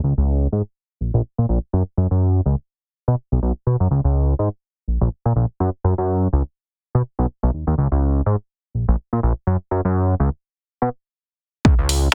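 Sunny and funky, this filtered disco house excerpt at 124 BPM with a light 16th-note swing rides on a fat, detuned sawtooth analog bass that pumps with sidechain compression and carries a low-pass filter sweep from the start until 11.7 seconds. Just before the sweep ends, a punchy, overdriven, layered electronic kick lands at 11.6 seconds, and a tape-tinged electronic hi-hat, re-recorded in a small room and also sidechain-pumped, enters just after, with all three parts up front in a dry, dense, heavily limited mix.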